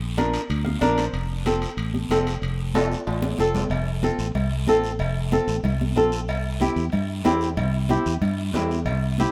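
This festive, joyful cumbia fragment moves at 186 BPM in a straight 4/4 feel, rooted in F major as the chords shift from Bb to F and later to C. Up front, a fingerpicked flamenco guitar with fresh strings rings out warm, adding a nylon-string fill at 0.5 seconds. Beside it, a fingered electric bass sits warm, direct and punchy in its low register. In the background, close and dry high-tuned congas played with hard hands give a bright, thin-skinned snap, while a raspy guiro scrapes up close. Ringing metal-shell timbales and cowbell sound distant, as if in a large room, and a drum fill from 2.7 seconds carries the music into a second section at 3.7 seconds, all under a light reverb.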